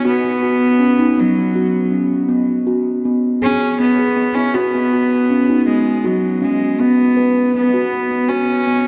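Calm and dreamy, this short cut from a longer piece is world meditative music built on tuned percussion, moving at 80 BPM in a straight 3/4 in B major pentatonic. A steel tongue drum carries arpeggios from B3 to B4 throughout its 8.9 seconds, its round, ringing tone struck with firm rubber mallets and set up front with delay. Beside it, a single bowed cello sings the melody between F#3 and E4, earthy and biting underneath with a smooth top, also placed up front and given its own delay. The harmony drifts from B5 to a rootless E6/9 over B at 2.3 seconds and back to B5 at 4.6 seconds, with a new section arriving at 6.8 seconds. A cathedral reverb with a six-second tail soaks the whole mix, leaving it hazy and spacious.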